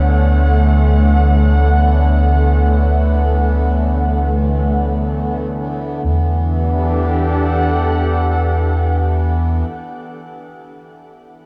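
Serene and melancholic, this free-time ambient excerpt in E dorian, tuned to A4 = 435 Hz, sets a smooth, detuned sawtooth analog pad with chorus and shimmer reverb over a round, nasal analog bass with tube saturation and a reedy, breathing hand-pumped harmonium drone, moving from Dmaj7 to Em11 at 6.0 seconds inside a moderate cathedral reverb and the warbling pitch drift of worn cassette tape.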